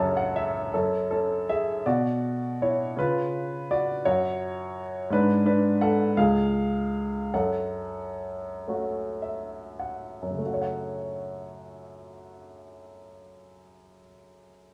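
This is a short, lyrical classical piece for solo upright piano, cut from a longer work, in F# minor and 6/8 with free, rubato timing. The mood is melancholic and wistful, and the pulse sits around 30-58 BPM counted in dotted quarters, slowing down from 5.1 to 10.4 seconds. The piano sounds clear, woody and natural, placed up front and spanning F#1 to A5. It opens with a brief fill before the first section begins at 0.7 seconds, moving through an open F#5, B minor and C# before an unharmonized passage at 4.0 seconds. A G#m7b5 leads back through C# to F# minor, and a second fill at 8.7 seconds carries into a contrasting section that runs until 14.2 seconds. A moderate spring reverb gives the instrument a soft studio halo around its tone.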